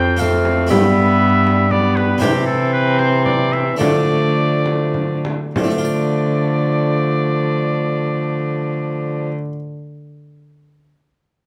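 In a straight 3/4 lilt between 96 and 120 BPM, this short cut from a renaissance-style consort dance in D dorian sets a solemn, rustic mood and gradually slows from 1.5 to 5.6 seconds, where a new section begins. A bright oboe with light vibrato carries the melody, sitting present above a viola second line with a gut-string, reedy, period character. Up front and the loudest part, a rich cello with an airy bow holds the bass, while a mellow, soft-attacked bassoon and a brilliant, plucked Flemish-style harpsichord with octave strings fill in the accompaniment. A small frame drum sounds distant in the background and drops out at 5.8 seconds. The harmony moves from F through G and C to D minor, and a moderate large-studio reverb lends the consort a roomy glow.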